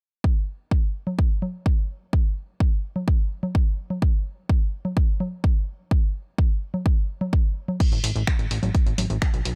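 Melancholic and hypnotic, this short cut from a longer melodic techno piece moves at 127 BPM in a straight 4/4, opening on an overdriven, layered electronic kick at 0.2 seconds, soon joined by a dry analog drum machine playing congas, finger snaps, hi-hat and crash cymbal, with sidechain pumping on the percussion, hats and cymbals. A new section arrives at 7.8 seconds, and at 7.9 seconds a plucky analog bass enters, sitting between A1 and B1, its wave-folded sawtooth, square and sine tones shaped by a fast-attack filter pluck that decays, funky and pumping with sidechain. The sound is gritty and hardware-driven within a digital ambience, with the drums and bass placed up front.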